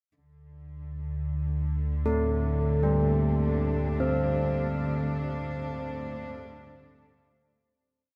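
Unsettling and dark, this short dark ambient drone piece moves at a slow 63 BPM in a vast, echoing space. An ominous, rumbling low drone with built-in reverb sits up front from 0.7 seconds, beneath an intimate chamber cello section playing softly bowed, slowly shifting sustained chords over a D5 harmony. Close-miked carillon bells with tape echo enter at 2.1 seconds, their bronze arpeggios drifting in two slow loops of unequal length, while a bright, metallic singing bowl holds a high ringing note with slow beating from 4.0 seconds.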